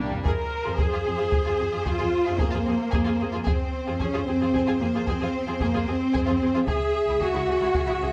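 In a rolling 12/8 pulse, a close, dry taiko ensemble struck with hard sticks drives this relentless, epic orchestral film-score excerpt, opening on a drum fill as bowed strings begin: a lush viola section, a distant double bass section and an expressive cello section with portamento. Dark, tight French horns hold sustained chords from 0.2 seconds, a vibrato-rich violin section carries a smooth second line, and a focused violin melody enters in the background at 0.3 seconds. The harmony rests on F minor before shifting to D-flat minor at 6.7 seconds, all in a detailed, lightly reverberant sound.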